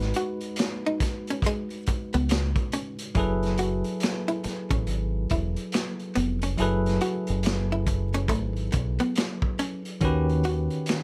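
Introspective and sultry, this neo-soul R&B excerpt swings at an unhurried pace over a gritty, saturated breakbeat kit with finger snaps, hi-hat, a tight kick and a medium-tuned snare, anchored by a round, deep dub fingered electric bass. A barky, bell-like tine electric piano carries the accompaniment while a clean, hollow-body archtop guitar, entering at 0.2 seconds, adds a dark second line. The chords move from G#m7 to F#m11 at 3.2 seconds and settle on D#7alt at 10.0 seconds, all wrapped in light reverb and vinyl crackle.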